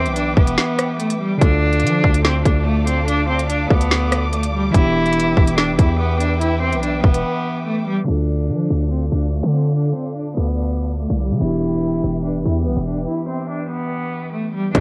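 A half-time drill groove of hard-clipped kick, woody snare, crisp hats and rim clicks drives this menacing hip hop piece until 7.2 seconds, while a punchy, heavy 808-style bass anchors the low end, a focused, close bowed cello sings the melody with vibrato over a worn, slightly out-of-tune overdriven tine electric piano, and a lush symphonic string section glides with portamento high above, all in a dry, tape-muffled home recording that passes through a filter sweep from 8.1 seconds before the drums return with an electronic impact at 14.7 seconds.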